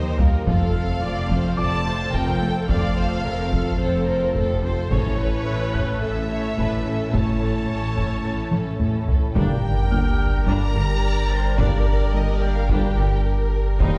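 A wet, roomy scoring-stage sound heard from further back frames this tense, brooding hybrid orchestral and electronic film cue in G minor at 108 BPM, where lush bowed violins with vibrato carry the melody over a second violin line, close expressive violas with portamento, smooth cellos and double basses, a detuned sawtooth analog pad with chorus, ringing harp-like synth pluck arpeggios with delay, a warm background piano with long sustain and heavy-stick taiko drums with fills, until at 9.4 seconds a Gm impact and electronic sub drop bring in a deep round sine sub bass up front, very quiet French horns and trombones, and a mellow tuba.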